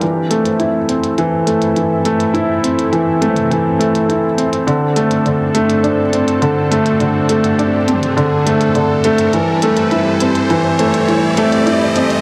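Tender and hopeful, this piano and strings electronica cut from a longer piece moves at 103 BPM in a straight 4/4, in F major, building steadily across its 12.2 seconds. Up front, a woody upright piano plays an intimate riff between D3 and E4, its action noise audible and a delay trailing its notes. Behind it, a lush, thick unison pad of detuned sawtooth and square waves holds sustained chords from G3 to A4, slow to bloom and long to fade, thickened with chorus. A dark, rumbling detuned saw bass sits barely audible underneath, while a minimal electronic kit of clicky hi-hats and toms, re-recorded in a small room, ticks quietly along. The harmony moves from Fmaj7 to D5 at 4.7 seconds and on to Am7 at 9.3 seconds, and at 5.9 seconds a background riser enters and climbs to the end, all bathed in a huge ambient reverb.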